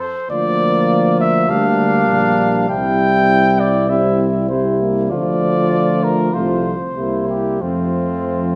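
Heard in the lingering reverb of a recital hall, this stately, triumphant classical brass quintet excerpt moves at a rubato 99 BPM, with a dark, up-front trumpet with light vibrato carrying the melody from 0.0 s, joined at 0.3 s by a mellow, distant flugelhorn second line, a smooth-topped euphonium and a background French horn in accompaniment, and a punchy, roomy tuba bass, as the harmony passes from Bb/D through Gm7/D and C to a closing C7 and F.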